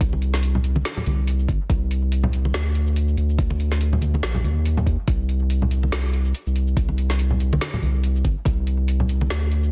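A half-time 4/4 groove at 142 BPM, swung on the 16ths, drives this heavy, dark deep dubstep cut in C minor, where a thick, saturated sub bass with a fast attack sits up front beside a knocking, overdriven electronic kick that drops out at 8.6 seconds, an overdriven garage kit of woody snare, metallic hi-hats and shaker shares the kick's small-room ambience, and close, dry congas played with soft hands add an acoustic touch inside a dense, heavily limited master.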